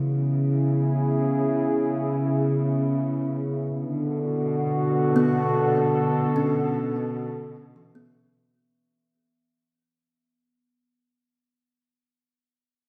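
Reflective and serene, this ambient excerpt drifts at 75 BPM in a straight 3/4, set in B dorian and cut from a longer piece. A vintage analog pad sits up front with sustained chords, its detuned, warbling tone softened by chorus, moving from C#m7 to Bm7 at 3.8 seconds. A kalimba plays woody, hollow arpeggios that ring through a diffuse ambient delay. Beneath them, a muted cello section bowed con sordino gives a dark, veiled bass line with vibrato. It fades in from the start and begins fading out at 5.4 seconds. The whole dreamy mix is soaked in a lush hall reverb, with the kalimba's last notes ringing on alone until 10.5 seconds.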